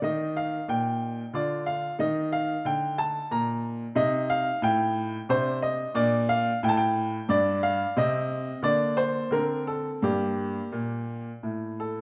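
This is a classical, baroque-style suite movement for solo grand piano, a short fragment cut from a longer piece. The mood is flowing and solemn, in a triple metre played with expressive rubato that lets the pulse stretch and give. The baby grand has a brilliant, open tone and sits up front, covering a span from the low bass register to the upper treble across the full 12 seconds. Its harmony opens on Eb and Dm before darkening through half-diminished and minor ninth colours such as Am7b5/C and Gm9. After a brief pause in the harmony at 8.0 seconds, it settles onto a G minor chord at 10.0 seconds. A moderate recital-hall reverb surrounds the instrument, and the overall production leans dark, giving the bright piano a sombre frame.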